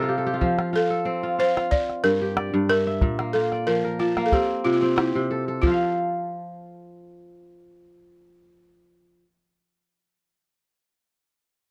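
West African traditional music, this short cut from a longer piece joins strings and xylophone in a joyful, hypnotic groove in 4/4 with a light swing. A fingerpicked kora opens with a brief fill, then spreads ringing, crisp arpeggios across a broad span for the whole passage, its acoustic tone sitting up front. The balafon carries the melody in a compact middle register, its woody, dry bars struck with soft rubber mallets and giving off a buzzing edge. A deep calabash adds close percussion from 0.4 seconds until 5.9 seconds, dropping out just after the music moves into a second section at 5.6 seconds. The harmony cycles through F, Gm, Bb and C5 before returning to F, captured by close, detailed microphones with little reverb.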